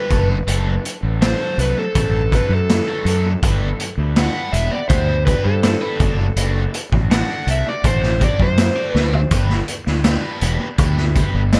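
An overdriven slide guitar, dark and played with fingerpicks, opens this psychedelic rock excerpt at 0.0 seconds, carrying the solo melody in D mixolydian through an analog delay. Alongside it, a cranked stack guitar plays a bright, picked, double-tracked riff with overdrive, phaser and its own analog delay. A fuzz fingered electric bass sits up front with a growly, punchy tone, and a raw garage drum kit plays hi-hat, kick, snare and toms with a boomy kick, a medium-tuned snare and a saturated, gritty sound with a rolled-off top. At a steady 82 BPM in a straight 4/4, the harmony moves between D/F# and G, and a short drum fill arrives at 9.0 seconds just before the return to G. The small room ambience and echo-heavy mix give the whole passage a kaleidoscopic, trippy haze.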